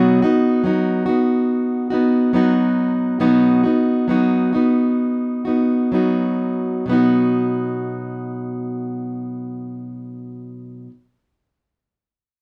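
A tender, hopeful pop fragment in B major, cut from a longer piece, moves in a straight 4/4 at a slow 62-72 BPM. A fingerpicked, plugged-in steel-string acoustic guitar carries it alone from 0.0 to 10.9 seconds, ranging from B2 up to F#4. Its jumbo body gives a full-bodied, warm voice that sits up front in the mix. The opening passage begins on a B chord and eases and slows through its first 6.9 seconds, before a second passage follows to the close. A wet studio reverb and the feel of a band playing live in one room lend the recording an intimate, natural space.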